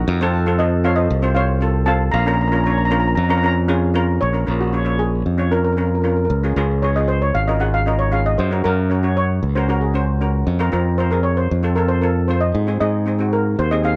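Calypso in Bb minor at 115 BPM in a straight 4/4, this brief cut from a longer piece carries a moody, brooding air. Two steel pans share the arrangement: a double seconds pan struck with medium rubber sticks plays accompaniment from the start with an airy, shimmering tone, while a cello pan played with hard rubber sticks carries the melody from 0.6 seconds in a metallic, bright voice. A modern fingered electric bass sits up front, growly and direct, anchoring the low end throughout. At 4.2 seconds the melodic pan moves into a solo that runs to the end, over a harmony that turns from Bbm through Db and Gb to a Fsus4 resolving to F before landing on Ab. The sound is dry and close, like a 1970s studio session.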